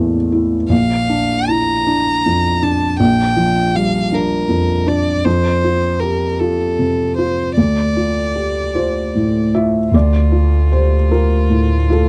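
A dry, close recording with light reverb and a 1970s studio character frames this fragile, melancholic neoclassical fragment in D minor, moving slowly at 52 BPM in a rubato 6/8 with uneven beats. A felt-muted upright piano, soft and intimate with audible action noise, carries the accompaniment from the start, and a clear solo violin with smooth, even vibrato enters at 0.7 seconds to carry the bowed melody up front. At 9.9 seconds a deep, punchy sub bass arrives on a sustained D, its sine tone opening with a pitch-drop attack.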